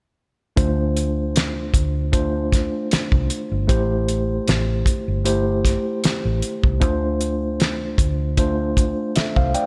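A small-room ambience frames this silky, bittersweet fragment of lush 1970s-style soul at 77 BPM in D minor with a light 16th-note swing, where a clean, mellow tine electric piano sits up front over Dm7, Am7 and Dm7 chords, a dark, foam-muted fingered electric bass adds round, punchy low end, and a cloth-damped, thuddy drum kit with a fat snare, tight kick, hi-hat and rolled-off top plays close and present from 0.6 seconds.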